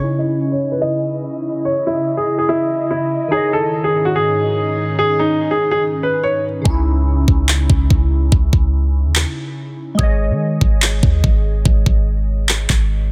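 A half-time trap groove at 144 BPM in 4/4 drives this menacing, hard-hitting cut from a longer piece, set in C# minor over a C#madd9 to G#sus4 progression. For the first 6.4 seconds a warm concert grand piano carries the melody up front, given a natural tone with deep bass and softened by a low-pass filter and digital delay. Glassy, detuned digital keys with chorus play the accompaniment throughout, under a filter sweep during the opening, while an ethereal pad with slow attack, long release and built-in reverb holds mellow sustained chords until the 6.6 second mark. At 6.7 seconds a boomy, dark 808-style bass and an overdriven electronic kit of handclaps and a knocking kick enter together, both placed up front. The mix is dry, dense and heavily limited in a modern style.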